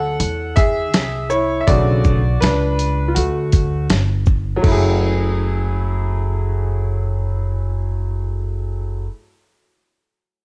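Captured at home on cassette with a digital ambience, this smoky, nocturnal jazz-hop fragment, cut from a longer piece, swings over Bm9 before shifting to F#m9 at 4.6 seconds, as a bright, brilliant upright piano with long sustain takes an up-front solo through the first 4.6 seconds, a woody, growly pizzicato upright bass on steel strings holds the low end, and a gritty, compressed sampler-style soul drum kit with thumpy kick, medium-tuned snare, hi-hat, shaker and crash cymbal plays through cassette-tape grain until it drops out at 4.8 seconds.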